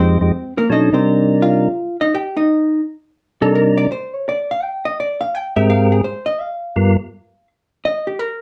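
A mellow, round percussive tonewheel organ with third-harmonic percussion and a slow rotary speaker carries the melody up front until 7.0 s, while a clean, compressed, picked hollow-body electric jazz guitar solos through 8.4 s in this soulful, late-night swing-feel jazz fragment in C minor at 168 BPM, tuned to A4 = 436 Hz, moving through Fm7, Cm7, Abmaj7 and G7#9 to a rootless Cm7 inside a dark, wet studio reverb.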